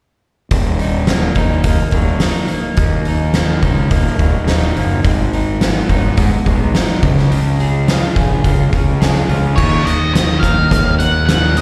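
A live gig captured through the venue's PA, with small-room ambience and recital-hall reverb, opens this brooding, cathartic excerpt of quiet-loud alternative rock in Eb minor at 106 BPM, moving through Ebm, Abm and Db. A slightly broken-up electric guitar picks arpeggios with slapback echo over a round, overdriven fuzz bass and an oversized, low-tuned drum kit whose fat snare, punchy kick and rolled-off top sit up front alongside crash and hi-hat. At 9.6 s the harmony lands on Eb5 and a dark octave-fuzz lead guitar enters high with distortion and slapback echo, sitting up front in the mix.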